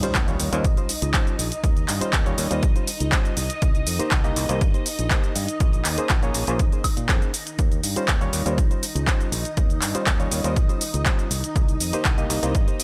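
Filtered disco house at 121 BPM in Eb mixolydian, this joyful, feel-good excerpt opens with a very quiet electronic impact from 0.0 to 1.6 s as a punchy analog kick drives from 0.1 s beneath an overdriven, layered house kit of handclaps, hi-hat, shaker and woodblock, while a growly fingered electric bass with tube saturation, a barky, reedy electric piano lightly overdriven and phased through its built-in speakers, and lush sawtooth string-machine chords with ensemble chorus and a slow attack all pump against the kick over Eb13, Cm7 and Bbm9 harmony in light reverb.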